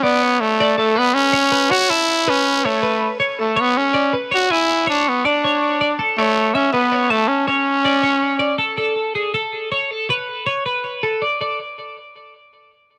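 Driving along in a fast, straight 7/8 at 322 BPM counted in eighths, this playful, intricate rock fragment pairs a raspy, growling trumpet carrying the melody with a bright, twangy twelve-string electric guitar picking arpeggios through lush chorus and digital delay. The gritty, punchy trumpet, with its light vibrato, rides up front until 8.6 seconds over chords moving from D5 to Aadd9, E6 and A, after which the clean, compressed guitar carries on alone until 11.6 seconds. Light reverb and a dark production frame the piece.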